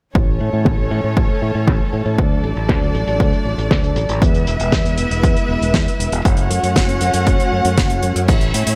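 Melodramatic and danceable, this italo disco excerpt puts a punchy, tape-warm electronic kick up front beside a damped 70s drum kit of dark crash cymbal, hi-hat and fat snare under a filter sweep, while a growly fingered electric bass with tube saturation and an intimate bowed string section holding soft-attack sustained chords with vibrato move through A, D, E and F#m in a small room with light reverb.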